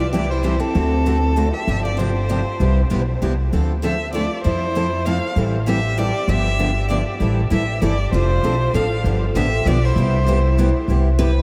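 Lively and charming, this short cut from a longer jazz manouche piece swings along in 3/4 at 196 BPM in C major, moving from a C6 opening through chords like Dm7, Fmaj7 and G7 before settling on Cmaj7. A single distant bowed violin carries the melody with vibrato and expressive portamento, while a picked steel-string guitar with subtle chorus and analog delay plays a second line. Two more bright, fresh-strung guitars supply accompaniment, one of them full-bodied and set in the background, over a woody, thumpy pizzicato upright bass on gut strings that sits up front, all bathed in a huge ambient reverb that gives the mix a dreamy, soaked quality.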